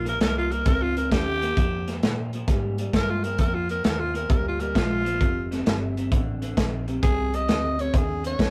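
Electric blues shuffle at 132 BPM in 4/4, with a heavy swing on the eighths and a rollicking, swaggering mood, heard in an 8.5-second excerpt cut from a longer piece in Bb mixolydian. A raspy, growling tenor saxophone carries the melody up front, its soft attack and jazz-style phrasing ranging from F4 to Eb5. Underneath, an electric guitar through a small old amp picks a slightly broken-up, lo-fi riff bathed in spring reverb, while a vintage foam-muted fingered electric bass holds down a round, dark low end. A crunchy breakbeat drum kit enters at 0.1 seconds with hi-hat, a tight kick and a medium-tuned snare, sounding saturated and gritty with a rolled-off top and sitting up front in the mix. The chords move from Eb7 to Bb7 at 1.6 seconds and on to F7 at 5.2 seconds, all captured in a rough rehearsal-room recording with light reverb.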